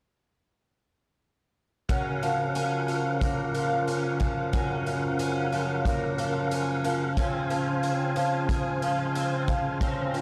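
Dream pop at 91 BPM in 4/4 with a floating, blissful mood, cut from a longer piece, where a mellow, round tonewheel organ with key click, chorus vibrato and a fast rotary speaker holds sustained chords up front beside a shimmering, octave-doubled picked twelve-string acoustic guitar playing arpeggios through analog chorus and tape echo with audible finger squeak, while a raw garage drum kit adds saturated hi-hat and a punchy kick from 1.9 to 10.2 seconds, moving from Gbmaj7 to Dbmaj7 at 7.2 seconds in a dry, gritty recording with light small-room reverb.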